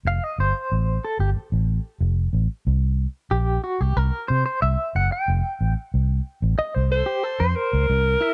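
A studio reverb surrounds this short funk excerpt, which moves at a strutting, energetic 92 BPM in a straight 4/4. A bright, twangy clean electric guitar sits up front and carries a featured solo through most of the passage. Its picked, compressed tone is colored by tremolo. Underneath, a vintage fingered electric bass gives a dark, round, foam-muted bottom that is amped and also placed forward. The harmony moves from Fadd9 to F#7#11 and then to a rootless F. At 6.9 seconds a breathy alto saxophone slips in for a brief jazz-style phrase, with subtone, light vibrato, scooped notes and a smooth top, and it carries on to the cut at 8.3 seconds.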